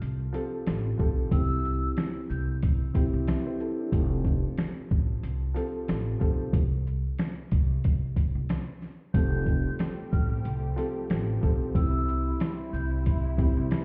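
Muffled as if heard through a wall, with vinyl crackle and a faint stone-room ambience, this nostalgic boom-bap hip-hop excerpt rides a swung 92 BPM groove in 4/4, anchored by a compressed, pitched-down sampler-style kit up front with a thumpy kick, medium-tuned snare, hi-hat and shaker. A growly, woody pizzicato upright bass sits beside an intimate, vintage upright piano whose action noise is audible as the harmony moves between Fadd9 and C, with a chordless stretch from 6.5 s. A breathy, mellow flute with straight tone and tape echo adds brief tongued lines at 1.3 s and again from 9.1 s, when a dark, softly bowed string section with light vibrato enters beneath it.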